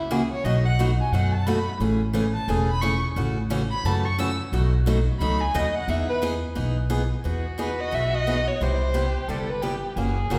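Set in the lush reverb of a recital hall, this lively, charming excerpt of acoustic string swing in E major at 176 BPM opens with an up-front bowed violin soloing with vibrato and portamento over a woody, thumpy pizzicato upright bass and a bright, boxy picked steel-string parlour guitar accompaniment through chords such as B7, Amaj7 and Emaj7, until a distant, expressive second violin takes the melody at 7.6 seconds while the first carries on beneath it.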